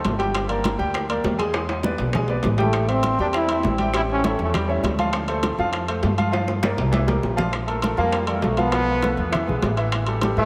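Salsa with a festive, sunny glow, cut from a longer piece: a clear, present baby grand piano and a woody, thumpy upright bass with gut strings sit up front over ringing metal-shell timbales, round low-tuned bongos and damped, high-tuned congas played with soft hands, while a tight trombone section with light vibrato and tape echo carries the melody from 2.6 to 5.0 seconds and again from 8.0 seconds, the whole mix soaked in dreamy cathedral reverb, with drum fills at 1.5 and 6.3 seconds.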